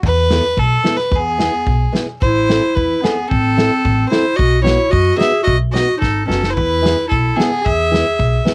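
A home cassette recording in a modest booth-like space gives this short clip of alpine folk a close, homespun sound. It is a jolly, festive alpine dance band tune in a straight 2/4 at 110 BPM, moving through Esus4, E, Am and B before settling back on E. A bright, nasal fiddle carries the melody up front with an earthy bowed tone, while a dark, full-bodied fingerpicked steel-string acoustic guitar fills in underneath, its finger squeaks audible through the tape grain. From 1.1 s a clarinet adds a distant, roomy second line in a classical style. Woody pizzicato upright bass and a loose acoustic drum kit with a tight kick, medium-tuned snare and rolled-off top hold down the bottom, and the drums play a fill from 6.0 to 6.6 s.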